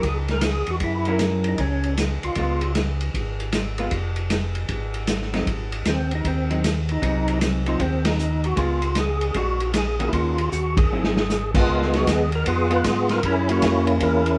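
A percussive tonewheel organ opens on melody over a hollow-body jazz guitar, a round, dark organ bass and an up-front, muffled vintage drum kit, a soulful soul jazz organ trio swinging at 155 BPM in one shared room with light reverb. The lead organ is fat and lightly overdriven with key click, chorus vibrato and a slow rotary speaker, dropping out briefly before returning at 5.9 seconds, while the clean, compressed guitar comps until 12.8 seconds. The band hits accents at 8.0 and 10.7 seconds, the second landing within a drum fill, with changes moving through Gb7, Ab7 and Db7 before the cut-off passage returns to Gb7.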